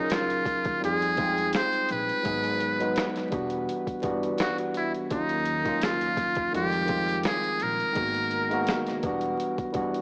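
A muted trumpet, a tine electric piano and an upright bass open this hazy, reflective lo-fi hip hop excerpt together, with a boom bap sampler-style kit joining at 0.1 seconds. The tempo is an unhurried 84 BPM in 4/4, with a light swing on the sixteenths. Up front, the metal-muted trumpet plays a jazz-style solo melody in a buzzy, breathy tone, with scooped notes and light vibrato, before it stops at 9.0 seconds. The worn, slightly out-of-tune electric piano sits close by, playing minor ninth and seventh chords such as Ebm9, Fm9, Abm7 and Em9 through its built-in speakers, with a cassette-tape coloring. Further back, a woody, growly pizzicato upright bass holds the low end, while the gritty, pitched-down drums bring a thumpy kick, a medium-tuned snare and hi-hat, also tinted by tape. A moderate spring reverb, vinyl crackle and small-speaker sound give the whole home cassette recording its dusty, intimate feel.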